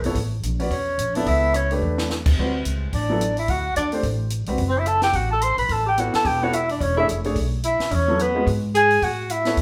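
A fast small-group swing and bop excerpt at 217 BPM in A mixolydian opens with the full band at once. A breathy, mellow clarinet carries the melody up front with light vibrato and a vintage subtone, while a distant, roomy tenor saxophone with scooped notes plays a second line beneath it. A clear grand piano with audible action noise accompanies, a woody, thumpy pizzicato upright bass sits up front, and a compact cocktail kit with dark cymbals, a high-tuned snare and a tight kick drives the swing, adding a fill at 1.8 seconds, all playing live in one room inside a wet large studio reverb that suits the warm, swinging mood.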